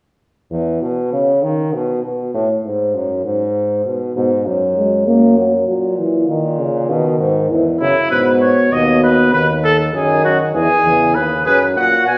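A bright bass trombone with light vibrato opens this lively, elegant, imitative classical canzona for brass ensemble in triple time, laying down the bass line from 0.5 seconds. A mellow euphonium joins with accompaniment at 4.2 seconds, and a soft-attacked trumpet adds a second line at 7.8 seconds; a further trumpet carrying the melody with light vibrato enters just as this cut from a longer piece ends. The players sound distant and roomy, set back in a stone room whose reverb lends a resonant, reflective glow.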